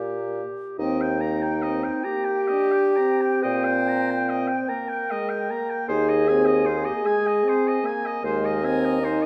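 A soft-edged, dusky clarinet sits up front alongside a low bassoon and a vintage-toned French horn with light vibrato, opening this slow, serene wind-quintet movement, cut from a longer piece, in a flexible rubato 12/8. At 0.8 s a mellow, hollow silver flute takes the lyrical melody with pure vibrato and tongued notes, while a clear, distant oboe adds a second line above the accompaniment, and the harmony shifts at 5.9 s. The classical-style playing is bathed in a wet recital-hall reverb that lends a roomy, tranquil glow.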